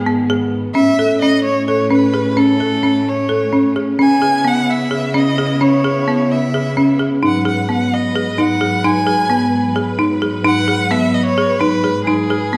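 Straight eighths grouped in an uneven seven-beat meter give this pensive, urgent chamber music a restless, off-kilter pulse. A folk marimba struck with hard mallets plays arpeggios from 0.1 seconds, its woody, dry, rustic tone sitting up front and lending a percussive edge. Above it, a single rich violin carries the melody with expressive vibrato and portamento. A studio string section holds sustained chords underneath, its ensemble sound biting and intense yet lush. The harmony moves from G#m through A and C#m7 to G#m7, with the main section settling in at 0.8 seconds. A recital hall reverb wraps the parts in a dark, warm production, and the music breaks off at 12.6 seconds as a cut from a longer piece.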